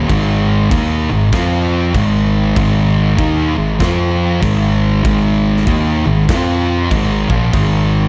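An up-front, dark fuzz guitar drives this brooding, hypnotic stoner and doom metal excerpt, with a second distorted guitar also playing a riff in the background as the harmony sways between Ab5 and F5 over a swung 4/4 feel. A round, overdriven fingered bass anchors the low end beneath a big acoustic drum kit with a punchy kick, medium-tuned snare and bright crash cymbals, which plays from 0.1 to 7.7 seconds. Light reverb and a small room ambience give the heavy, cut-from-a-longer-piece passage a close, thick presence.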